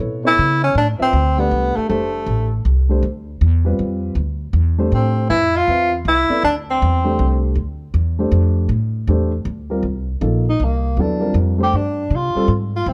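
A dark concert grand piano and a woody, pizzicato upright bass open this modal jazz piece together, setting a searching, spiritual mood in a swung 3/4 at 159 BPM. The piano comps on Dm9 in D dorian with a vintage, smooth tone, deep low end and short sustain, while the thumpy, steel-strung bass sits up front beneath it. A mellow tenor saxophone states the melody in short phrases with vibrato and a soft attack, its roomy, distant tone still placed forward in the mix. At 9.8 s the harmony shifts to Cm9 and C dorian as the tenor saxophone solo section begins, the horn re-entering at 10.5 s, before a rootless Dm7 closes the passage. Close, detailed microphones and light reverb give this excerpt from a longer piece an intimate, present sound.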